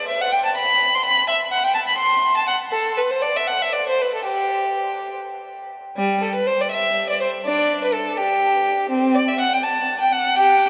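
A flowing, radiant baroque-style suite movement for unaccompanied violin in G major, this short excerpt in 6/8 moves with rubato at 66-84 BPM, its single bowed violin sitting up front with a rich, expressive tone, soft attacks, vibrato and portamento across a range from G3 to C6, bathed in the long, wet reverb of a vast cathedral, with a new section arriving at 6.0 seconds.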